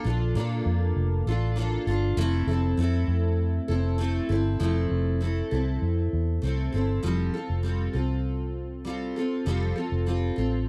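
A dry, close 1970s-style studio sound frames this carefree, heartfelt acoustic pop excerpt in F major at 99 BPM, where a bright, double-tracked picked steel-string acoustic guitar with fresh strings rings up front alongside a round, foam-muted vintage fingered electric bass, moving from Bbmaj7 to Fmaj7 and settling on Fadd9 at 7.0 seconds.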